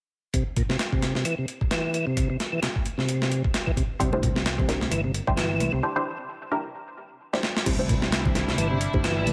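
A light reverb and digital ambience frame this short, playful breakbeat excerpt, cut from a longer piece and moving at 131 BPM in 4/4 with a swung sixteenth feel in C mixolydian, opening on a Cadd9 chord. A gritty, overdriven sampler-style drum kit sits up front with a thumpy kick, medium-tuned snare, hi-hat and crash, sounding compressed and re-recorded in a small room, while a tonewheel organ riff in its low register churns through fast rotary speaker, chorus vibrato, key click, overdrive, a low-pass filter and tape echo. At 4.0 seconds a growly, punchy picked electric bass enters with tube saturation, joined by a muted, detuned dub chord stab whose sawtooth and square-wave tone carries a sub octave, filter sweep, phaser, cassette-tape colour and tape echo, and moments later by very quiet, close and dry congas played with hard hands. A break arrives around 5.8 seconds, and a drum fill at 7.3 seconds leads into a new section at 7.7 seconds, where a rich studio string section adds floating, bowed sustained chords with soft attack and sidechain pumping. 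The result is funky, with the organ and drums carrying the groove throughout.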